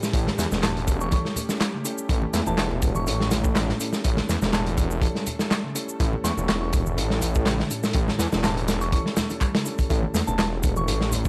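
A raw, energetic breakbeat excerpt at 123 BPM opens on a crunchy, saturated drum kit up front, with tape-warm electronic shaker and handclaps, a swirling, very quiet phased analog pad holding an A7 chord, a round, punchy picked electric bass riff and dark, mellow grand piano stabs echoing through analog delay. A thick, menacing detuned saw bass enters up front at 0.1 seconds, soft low-tuned congas slip in, and a pure FM synth bell melody with chorus and an old-record tint arrives at 0.6 seconds, all captured in a dry, gritty hardware recording.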